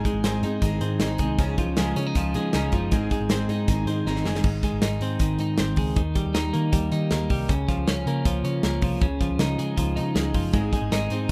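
Bright and nostalgic, this short excerpt of jangly indie pop moves at 157 BPM in a straight 4/4, centered on Ab, with an up-front, compressed twelve-string electric guitar spinning clean arpeggios through tape echo over a round, foam-muted vintage bass and a modern kit with a tight kick, medium-tuned snare, hi-hat and crash. A jumbo steel-string acoustic guitar sits in the background with full-bodied picked accompaniment, dropping out after 4.5 seconds and returning at 10.5 seconds, while a drum fill at 4.1 seconds leads into a new section that moves through Eb, Bbm/Db and Dbadd9 before settling back on Ab. The whole has the rough feel of a home demo, dressed in studio reverb.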